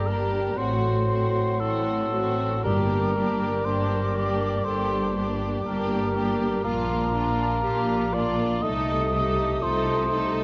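In a rubato 4/4, this elegiac, melancholic classical passage from a longer piece sets a distant, smooth violin section melody against a second violin section in the background, an airy flute, a punchy clarinet, a cor anglais with light vibrato and a mellow bassoon, while a very quiet viola section with portamento, a focused cello section and an expressive double bass section fill out the lower strings, soft-mallet timpani add a round G2 from 2.6 to 4.1 s, and light reverb surrounds the close, detailed sound.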